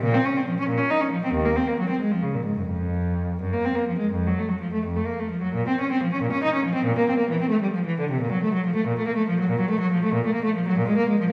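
A single bowed cello carries this solemn, flowing fragment of a baroque-style suite movement, its warm tone shaped by expressive vibrato and portamento as it moves freely in a rubato twelve-eight lilt between Eb2 and Eb4. The opening phrase returns at 5.6 seconds. The instrument sits up front in a church or concert-hall acoustic whose lush reverb lingers for about 1.6 seconds.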